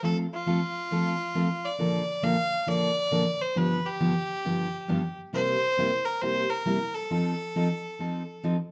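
A bowed fiddle and a picked steel-string acoustic guitar start together at once, both sitting up front in this cheerful, swinging country excerpt cut from a longer piece. The single fiddle carries the melody with a biting, nasal tone that has an earthy edge. Beneath it, the jumbo-bodied acoustic guitar gives full-bodied accompaniment, with the odd finger squeak audible on the strings. The harmony moves from F through Bbmaj7 and G7 to C7, turning to F7 near the end, all over a swung eighth-note feel. A short, wet club reverb places the duo in a small, lively room, and the fiddle drops out at 8.4 seconds just before the guitar's last note at 8.6 seconds.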